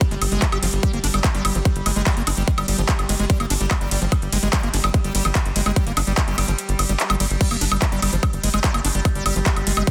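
Dense, heavily limited and lightly reverberant, this hypnotic, alien psychedelic trance excerpt drives along at 146 BPM in G phrygian. An up-front, overdriven electronic kick and a layered big-room kit of crash, handclaps, metallic hi-hats, ride and woodblock pound over a tight, punchy sawtooth sequencer bass with tube saturation, while a squelchy, resonant acid bass riff with filter sweeps, chorus, delay and sidechain pumping cuts through brightly. Behind them an overtone-sweeping drone sustains its chords in the background with chorus and pumping, and the kick drops out from 6.6 to 7.4 seconds before the drop resumes.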